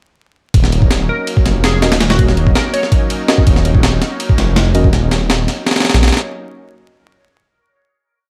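A heavily chopped breakbeat drives this short drum and bass and jungle piece, its sampler-style kit sitting up front with a thumpy kick, a high-tuned snare and ride cymbal, compressed and gritty inside a small room ambience. Beneath it, a detuned saw bass plays long gliding notes that are thick, beating and menacing, saturated and dark enough to match the drums for presence. A lush unison pad holds sustained chords from 0.5 seconds, airy and bright with chorus and a vintage 12-bit sampler grit. A glassy, crystalline wavetable pluck adds short answering phrases from 1.1 to 3.1 seconds, warbling through chorus, cassette tape colour and dub echo. A mellow, clean tine electric piano sits in the background with sparse echoing chord stabs, one shape moved in parallel, while a layer of vinyl crackle adds texture, giving the whole drop a feel both atmospheric and frenetic.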